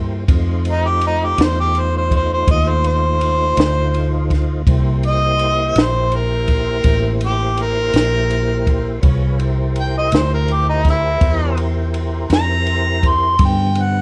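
A slow 12/8 blues sways at 55 beats per minute on a straight feel, carrying a gritty, swaggering mood in C mixolydian. A compact cocktail kit of kick, snare and ride enters at 0.3 seconds, its dark, smooth sound pairing a punchy kick and high-tuned snare with dark cymbals and a rolled-off top in a small room. Beneath it, a vintage muted fingered electric bass sits up front with a round, foam-muted, amped tone, while a tonewheel organ holds clean sustained chords colored by chorus vibrato, key click and a slow rotary speaker. From 0.7 seconds a mellow harmonica takes the solo, its overdriven, plate-reverbed line ranging from Eb4 to C6 with light vibrato, scooped notes and a jazz-leaning, roomy character. The harmony moves from F7 to C7 at 4.7 seconds before turning to G near the end of this fragment cut from a longer piece.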